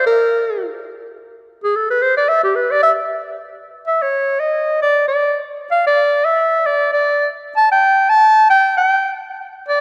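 Swung eighth notes in a brisk 4/4 drive this sophisticated jazz excerpt, where a breathy clarinet plays alone and up front from start to finish, moving between G4 and A5 with a light vibrato. The instrument sits in a lush hall reverb that lingers for about 2.5 seconds, giving the rough home demo mix a warm, spacious glow.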